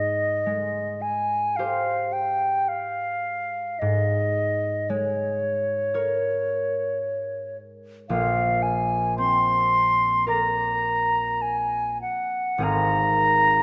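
A moderate scoring-stage reverb gives this dreamy, luminous fragment of an impressionist classical duo a soft glow, with the concert flute up front and the concert harp sitting lower in the mix. The flute carries the melody between Db5 and C6 in a pure, straight, tongued tone, while the fingerpicked harp supplies a ringing acoustic accompaniment that reaches down to Ab1. The rubato phrasing in 4/4 drifts through Abmaj7, Absus24 and Bb9 before settling on Ab69 at 12.6 seconds.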